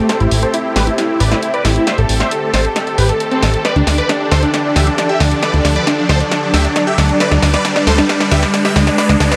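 A huge, euphoric supersaw lead carries the melody up front in this driving, soaring uplifting trance build-up, its bright, compressed unison tone colored by phaser, a low-pass filter sweep and dub echo. Beneath it, a lush supersaw pad holds sustained chords moving from Am7 to Dsus4 at 3.6 seconds, while a plucky, funky analog bass with tube saturation punches out the low end. A punchy analog drum machine plays a continuous fill on high-passed hi-hat and tape-warm snare, and an electronic riser rises in the background from 0.2 seconds, all set in light digital ambience with a dark production.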